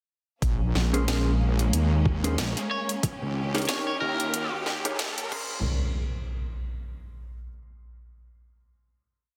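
Glitch hop at 92 BPM in Bb dorian, swaggering and playful, this short whole piece is a filter-swept build over Bbm9 and Eb7 where a gritty, overdriven electronic kick and a swung, edited kit with cracking snare and bright hats play alongside a heavy, detuned sawtooth wobble bass, while lush bowed strings hold sustained chords with sidechain pumping, a dark, clean electric guitar plays syncopated close-voiced stabs through dub echo, a twangy, slightly broken-up lead guitar adds short phrases from 2.7 to 4.5 seconds, and a background riser and impact carry the music into a final hit at 5.6 seconds.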